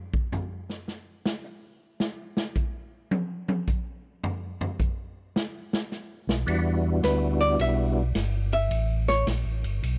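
Swinging and bluesy, this soul jazz organ trio fragment at 107 BPM opens with a drum solo on a boomy, natural big-band drum kit before a round, lightly overdriven organ bass enters at 6.3 seconds, a percussive, clean organ melody with slow rotary shimmer joins at 6.5 seconds over Em7 moving to A9, and a dark, picked hollow-body archtop guitar adds accompaniment from 7.0 seconds, all captured in a dry, close 1970s-style studio sound.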